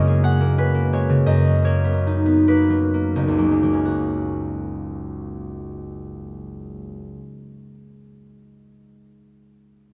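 Dreamy and serene, this solo classical harp piece moves in a flexible, rubato 6/8 and is cut from a longer work. The fingerpicked concert harp sits up front with a ringing tone, spanning F#1 to F#5, opening on an F#69 chord and slowing through its first 3.9 seconds before a new section begins. The harp plays until 7.5 seconds, its notes carried by the moderate reverb of a recital hall.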